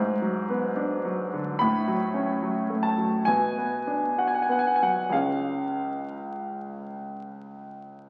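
Vinyl crackle from a very old 78 rpm record surrounds a clear grand piano, which sits present and up front inside a wet recital hall reverb. This is a romantic classical nocturne for solo piano in 4/4, with a yearning, mournful mood and a freely pulling rubato feel. The piano is the only instrument, spanning C#2 to D6 across this brief fragment of a longer piece, which lasts about 8.1 seconds. Its harmony moves from G#m7b5 through F#m/A and Bm before arriving on C# at 5.1 seconds. The aged surface noise and the lingering hall give the playing a distant, faded quality.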